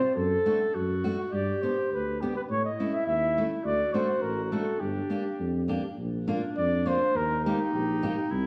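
A wet recital-hall reverb surrounds this festive, jolly cut from a longer alpine folk dance-band piece, played in a loose, rubato two-beat metre. Up front, a mellow flugelhorn carries the melody with light vibrato, a soft attack and a smooth top, while a classical-style clarinet adds a second line beneath it. A distant, roomy tuba with a slight vibrato holds the bass, and a dark, fingerpicked steel-string acoustic guitar fills in the accompaniment as the harmony moves from D/F# through G and A to D and G minor, then turns at 6.0 s toward B flat and E flat.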